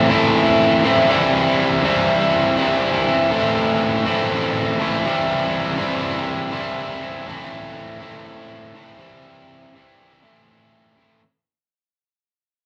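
Rock in A minor at 121 BPM in a straight 4/4, this swaggering, gritty passage is cut from a longer piece and fades out across its whole 11.2 seconds. A distorted electric guitar carries the solo from start to finish, picked and double-tracked so it sits up front with a bright, distorted edge. Its range runs from A2 to E4, and the instrument is tuned slightly sharp to A4 = 444 Hz. The harmony sways between Am and C, returning to Am at 10.2 seconds. A wet studio reverb and a live-in-one-room sound lend the playing an immediate, raw presence.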